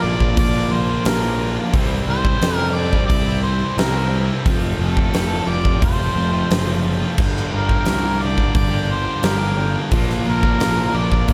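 This gritty, brooding classic rock passage in G dorian moves at 88 BPM in a straight 4/4 over a Bb, C, Fadd9, Gm, Bb progression, cut from a longer piece. A mellow, vintage harmonica with vibrato and tape echo carries the solo melody, while a scooped, compressed distorted electric guitar and a crunchy overdriven guitar set further back play riffs over a growly, round fuzz bass. A huge arena drum kit with a fat snare, punchy kick and bright cymbals sits up front from 0.2 s, a barely audible tonewheel organ with key click and slow rotary speaker holds sustained chords underneath, and the overall sound is dry with little reverb.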